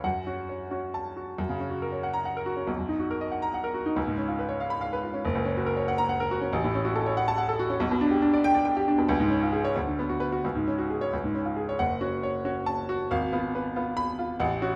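Agitated and stormy, this short cut from a longer classical piece is a virtuoso piano study in 6/8 at 92 BPM counted in dotted quarters, played with a pushing-and-pulling rubato. A solo baby grand carries everything from 0.0 to 14.8 seconds, its tone clear and natural with a short sustain, sitting up front even as the room is heard from further back. The part ranges from a deep F#1 up to B5, tuned to A4 = 442 Hz. Set in F# major, it opens on an F# minor chord before the F# major chord arrives at 1.4 seconds. It moves through colorful harmonies such as Bmaj7, C#7 and G/B, and darkens into F# minor from 6.5 seconds. The opening idea returns at 11.8 seconds, closing on an unsettled Fdim/Ab, all bathed in a wet, large studio reverb.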